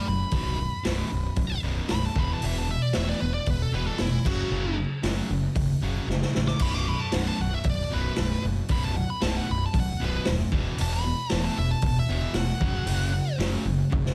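This heavy, aggressive hard rock excerpt opens at once with a bluesy, distorted lead guitar soloing over two overdriven rhythm guitars that drive a bright, picked riff from the background, built on power chords moving between B, E and F#. A fuzzy, picked electric bass enters at 0.1 seconds, growling low and saturated underneath. At 0.3 seconds a raw garage drum kit comes in up front, with a boomy kick, medium-tuned snare, hi-hat, toms and crash cymbal, its gritty, small-room sound rolled off at the top. The lead guitar carries a tape echo on its warm tone and rings out high above the grinding rhythm section. A drum fill breaks in at 6.1 seconds before the chord cycle starts again, and the lead drops out at 13.4 seconds as the band pushes on under light reverb into another fill.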